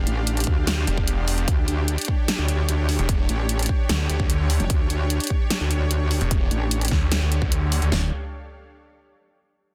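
Chaotic and heavy, this wobble dubstep drop runs at 149 BPM in a half-time 4/4 feel, rooted on D minor in D harmonic minor and tuned slightly sharp to A4 = 445 Hz. A lush supersaw pad holds sustained chords underneath, its detuned unison saws and sub octave swelling in with a slow attack while sidechain pumping makes it breathe against the beat. Up front, a snarling distorted saw bass growls with a moving notch and overdrive, joined by a metallic wobble bass whose FM tone is saturated, chorused and overdriven. Two layered electronic drum kits drive the groove, one carrying hi-hat and snare, the other kick, snare and toms from 0.5 seconds, with a punchy kick and a huge snare that sound re-recorded in a small room. The mix is dry, dense and heavily limited, and this excerpt, cut from a longer piece, ends just as a new section begins at 7.9 seconds.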